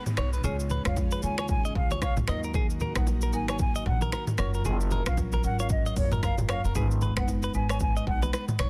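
Mellow and smooth, this afrobeats excerpt moves at 114 BPM in G# dorian with a swung sixteenth-note feel, as an up-front afro-pop drum kit with a deep kick, metallic hats and softly clipped snare anchors a thumpy, woody pizzicato upright bass and very quiet, close bongos and congas. A bright, twangy clean electric guitar riff and a rosewood marimba circle beneath a pure, straight-toned concert flute melody that enters at 0.9 seconds, while an airy, breathy pad with chorus holds sustained chords in the background. A faint electronic downlifter sounds until 2.5 seconds, and the chords move from C# through D#m and F#maj7 to G#m in a dense, heavily limited small-room mix.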